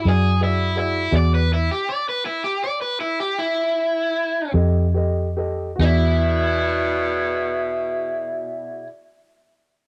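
A bright, overdriven electric guitar carries the melody up front in this swaggering, soulful 12/8 blues, cut from a longer piece and captured as a home cassette recording with light small-room reverb. A round, punchy, foam-muted electric bass with transformer saturation is also prominent, while a dark, worn baby grand piano with long sustain supplies accompaniment over E9 and F9 chords; the band slows down through the opening and halts in a stop from 1.1 to 4.5 seconds. At 5.8 seconds a clear tenor saxophone with light vibrato and scooped notes enters on a jazz-style second line.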